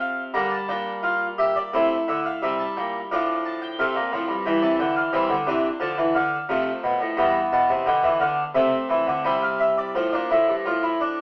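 This is a classical, baroque-style four-part fugue for solo harpsichord, solemn yet driving, moving at 87 BPM in a straight 4/4 and tuned to A4 = 441 Hz. The harpsichord plays throughout this 11.2-second passage cut from a longer piece, spanning G2 to Bb5. It is a Flemish-style instrument with three sets of strings, and its plucked tone is brilliant and full, close-miked, dry and up front. Around it, the recording carries the wet reverb of a stone room, heard from further back and given a telephone-like sound. The harmony moves through Gm, C, F/A, C/G, Dm, G and C, and at 10.0 seconds a new section begins on Dm just before the cut.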